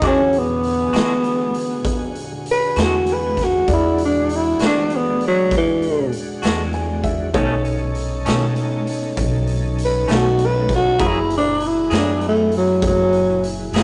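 A rough rehearsal-room recording with tube saturation, a muffled top end and a moderate stone-room reverb frames this rollicking, laid-back slow blues in 12/8, cut from a longer piece. A growling, breathy tenor saxophone solos up front throughout, with subtone, vibrato and scooped notes. Beneath it are a twangy, clean electric guitar with harmonic tremolo, a woody pizzicato upright bass, a gritty garage drum kit of punchy kick, snare and hi-hat, a tonewheel organ holding smooth chords through chorus vibrato and a slow rotary speaker, and a polished grand piano in the background that adds a brief fill at 6.4 s. The chords move through E9, B9 and F#9.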